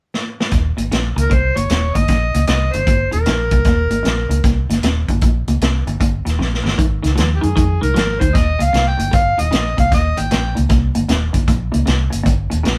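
A rollicking electric blues shuffle rolls along in 4/4 with a 65% swing on the eighths, kicked off by a quick drum fill on a vintage kit with hi-hat, a punchy kick and a medium-tuned snare, its sound mid-forward and rolled-off at the top. At 0.5 seconds the electric guitar enters with a low riff through a small old amp, its tone slightly broken-up and lo-fi with a phaser coloring it, while a foam-muted fingered electric bass holds the bottom with a dark, round, amped sound. An overdriven harmonica takes the soulful melody up front, gritty and amplified, with tongue slaps, scooped notes and a jazz-style phrasing in two solo passages, the first beginning at 1.2 seconds and the second at 7.4 seconds. Another drum fill marks the move from Eb to Absus2 before the harmony returns to Eb. The band sounds as if playing live together in one room with light reverb, and this cut from a longer piece ends at 12.8 seconds.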